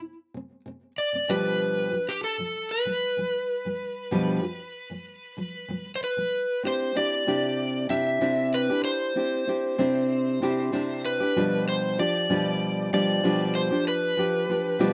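The recording has a dry, open-air sound with a light reverb, and both guitars sit up front, each carrying a slapback echo. This is a sunny, easy-going pop instrumental in C major at 95 BPM in a straight 4/4, taken from a longer piece. A fingerpicked nylon-string guitar opens the track at 0.0 seconds with a warm, deep classical tone, its finger squeaks audible as it accompanies in the low-to-middle register. At 1.0 seconds an overdriven electric slide guitar enters with the melody, its dark, gritty voice played higher above the nylon strings. The harmony moves from Csus2 to G7/B, then shifts to Cadd9 when a new section begins at 6.6 seconds, returning to G7/B before the passage cuts off.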